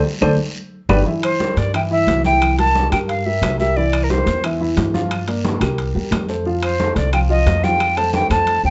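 Afro-Cuban jazz at a brisk 178 BPM in C mixolydian, this danceable, sophisticated excerpt opens with a drum fill, a band accent and a brief solo turn from the dark, mellow upright piano, while the thumpy, pizzicato upright bass and ringing metal-shell timbales play alongside from the start, with distant soft-handed congas and woody claves sitting in the background and a raspy guiro heard close and dry. A breathy, bright concert flute with a tongued, slightly unsteady straight tone carries the melody up front from 1.2 s, drops out, and returns at 6.6 s over chords moving from C7 through Gm7 to Fadd9. A moderate club reverb gives the whole a live club feel.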